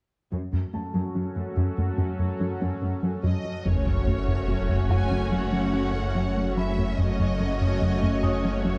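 A straight 4/4 pulse at 72 BPM drives this tense, brooding cinematic cue, a hybrid orchestral and electronic film score in F# dorian cut from a longer piece. It opens on an F#m chord, with a punchy analog bass riff, mellow round pluck arpeggios, a shimmering retro pulse-width pad and a distant cello section holding low F# under a filter sweep, while a natural-toned grand piano adds tape-echoed texture from 0.7 seconds. A focused violin melody with warm vibrato enters at 3.2 seconds, and at 3.7 seconds an impact and a huge sub drop arrive with a swirling, thick phased saw bass, a lush viola section and a second violin line, all set in a dark, warm production with moderate scoring-stage reverb.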